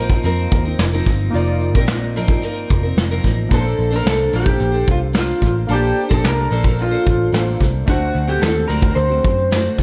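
Indie bedroom pop at 110 BPM in Bb major, laid-back and sunny, where a full-bodied picked acoustic guitar with a warbly drift, nostalgic detuned synth keys with a cassette-tape haze in the background, a round foam-muted electric bass and a distant, roomy brush kit with a punchy kick set a dreamy, reverb-soaked bed before a dark, slightly broken-up electric guitar through a small old amp takes the melody up front at 3.5 seconds with analog chorus and delay, as the chords move from F7sus4 to Bbmaj9 and then D7.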